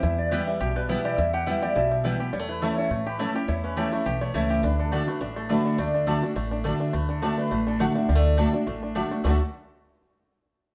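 A brisk, swinging bluegrass passage opens with most of the string band together: a bright, full-bodied picked dreadnought acoustic guitar sits up front with the accompaniment, while a woody, thumpy upright bass plucks the low end on gut strings. Over them, a lap resonator guitar played with slide and fingerpicks carries a metallic, nasal melody in its upper range, joined by the mellow, twangy lines of a fingerpicked banjo. A picked mandolin with doubled strings adds short stabs from 0.3 seconds, its tone warm and woody. The harmony moves from E minor through A over E to D, and the mood stays lively and virtuosic. The resonator guitar drops out at 8.9 seconds as the fragment nears its end, and the band sounds set back in a reverberant studio room.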